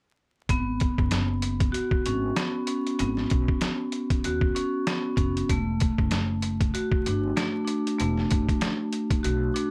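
Vinyl crackle and light reverb frame this gritty, reflective boom-bap hip-hop excerpt at 96 BPM with a swung 16th feel, where a pitched-down, 12-bit-grained sampler drum kit with a thumpy kick and medium-tuned snare sits up front beside a dry, close-miked vibraphone whose ringing, metallic tones pass through cassette tape and filtering, while a woody, growly pizzicato upright bass carries the low end through G#m7 and then E9sus4 at 5.5 seconds, before the kick drops out at 9.2 seconds.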